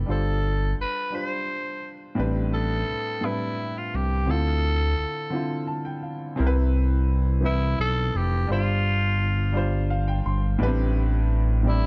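Lightly reverberant, this short cut from a longer slow R&B piece moves in a straight six-eight at 57 BPM, its mood sultry and yearning. A warm baby grand piano carries the accompaniment throughout, sounding natural and up front, and steps forward with fills at 5.3 and 9.5 seconds. Beneath it, a smooth synth bass built from sawtooth and square waves holds sustained, mellow low notes with a fast attack and a touch of vibrato. The tenor saxophone leads from the start with a clear yet breathy, raspy, gritty tone of vintage pop character, wrapped in plate reverb and digital delay. The harmony drifts through G7sus4, Am11, Dm9 and Cmaj7, then circles back to G7sus4 and Am11 as the second section unfolds from 6.4 seconds.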